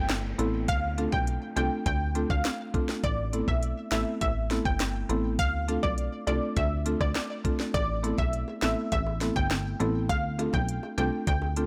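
A bouncy, hypnotic dancehall groove opens with a very quiet downlifter falling away under a warm, detuned analog pluck melody and a punchy, wave-folded bass that sits up front. The island pop drum kit arrives at 0.1 seconds with a knocking kick, sharp snare, smooth hi-hats, rim clicks and handclaps, driving a straight 4/4 feel at 102 BPM in A minor. A buzzing marimba played with medium hard mallets adds woody, close-miked accompaniment that pumps against the sidechain, while the pluck's chorus and digital delay give the high melody a bright shimmer. The harmony rocks between Amadd9 and Dm7 throughout, and at 7.7 seconds tight, high-tuned bongos join very softly in the background. The whole track is dry and blown-out with heavy overdrive, and this excerpt is cut from a longer piece.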